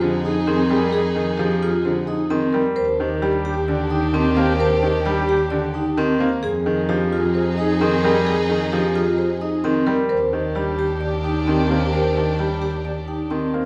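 Classical minimalist pattern music in F dorian at 131 BPM, hypnotic and urgent, cut from a longer piece as the harmony alternates between Fm9 and Ebmaj7. A clear, intimate baby grand piano sits up front with audible action noise, beside a bowed double bass that plays with vibrato and portamento, while a metallic, ringing vibraphone with fast motor vibrato spins arpeggios and a woody, percussive rosewood marimba carries the melody from the background. A pure, tongued alto flute with rolled-off highs adds a second line and a rich, focused chamber violin section holds sustained chords, the ensemble heard in a moderate recital hall reverb.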